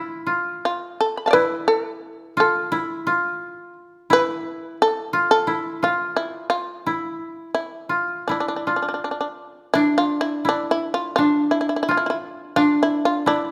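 Japanese traditional chamber music, meditative and still, moving with an uneven, rubato pulse in this short cut from a longer piece. Up front, a bright, buzzing, plectrum-plucked shamisen carries the melody across a fairly high range. A woody, fingerpicked koto holds a narrow second line beneath it, and both play through to 13.5 seconds inside a moderate recital-hall reverb, with the music moving into a new section at 9.7 seconds.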